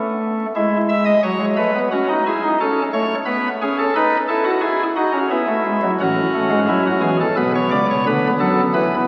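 A pipe organ's cornet stop opens the recording, its nasal, baroque-voiced solo tone sitting up front with a touch of chiff at the start of each note, heard through the crackle of a very old 78 rpm record. This is a stately yet lively classical piece, a baroque-style fugue in three parts, moving at 88 BPM in a straight 4/4 and tuned to A4 = 441 Hz. The organ covers a span from A1 to E5 and plays alone for the whole 9.1 seconds of this fragment cut from a longer work. The harmony begins unaccompanied by chords, then moves from E/G# at 0.6 seconds through F#m7/C#, B7, E and A before reaching Bm7 at 7.4 seconds. A long, wet church reverb lingers around the organ, adding to the sense of a grand, resonant space.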